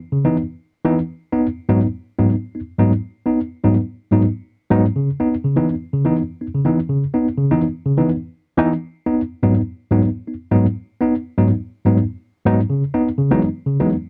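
A worn, slightly out-of-tune tine electric piano plays alone from 0.1 to 14.0 seconds, lightly overdriven and heard through its built-in speakers, sitting up front in this driving, glamorous disco passage at 124 BPM in C# minor. It moves between C#m7 and G#m7 in a straight 4/4 feel before shifting to a C#m11 chord at 12.7 seconds. The sound is a dry, close 1970s-style studio recording with little reverb, cut from a longer piece.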